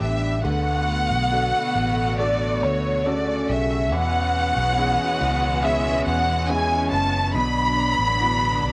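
A lush, vibrato-rich violin section carries the melody up front with a slapback echo from the first second of this tender, heartfelt pop ballad at 70 BPM in D major, joined by a round, foam-muted electric bass, a floating sul tasto cello section on a second line, a polished concert grand piano, a smooth studio string section holding chords in the background, and a very quiet jumbo acoustic guitar picking arpeggios with finger squeak, all over D, E6 and Bm in an echo-chamber reverb with small-room ambience.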